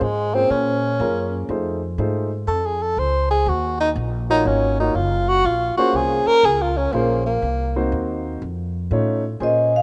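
Late-night and swinging, this short cut from a longer small-group swing and bop jazz piece opens with a breathy tenor saxophone solo, full of subtone, vibrato and scooped notes, over pizzicato upright bass with a growly, woody tone, joined at 0.3 seconds by a polished upright piano. The saxophone carries the solo until 9.4 seconds, when a metallic, ringing vibraphone played with medium hard mallets and its motor off enters up front with the melody. Moderate plate reverb surrounds the rough home demo mix.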